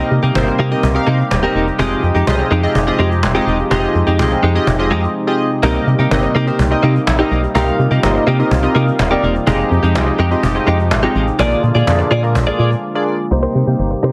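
Dance-pop in C minor at 125 BPM in a straight 4/4, this bittersweet yet confident piece is cut from a longer track and moves through Cm7, Fm9 and Bb7 chords. An organ-like FM bass sits up front with a hollow, dark, percussive tone that decays after each fast attack, while a snappy, vintage-sounding cajon with snares comes in at 0.2 seconds and carries the drum part until a short break at 12.8 seconds. A chorused polysynth, glossy and retro with an evolving pulse-width-modulated character, plays the accompaniment up front, and a direct-recorded clean electric guitar plays a picked, compressed riff drenched in lush chorus. Behind them, a warbling analog pad holds smooth sustained chords with a soft attack. A brief silent gap around 5.2 seconds interrupts the groove, and the whole mix has a heavily compressed, low-passed radio sound with light digital reverb.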